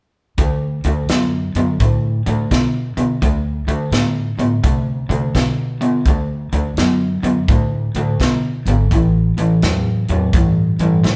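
A live-in-one-room sound with a moderate large studio reverb frames this soulful, gritty electric blues shuffle excerpt, where an up-front overdriven semi-hollow guitar picks a low riff over woody pizzicato upright bass and a natural acoustic drum kit with punchy kick, medium-tuned snare and hi-hat, all playing together from 0.4 to 11.2 seconds as the harmony holds on D before moving to A7 at 8.9 seconds.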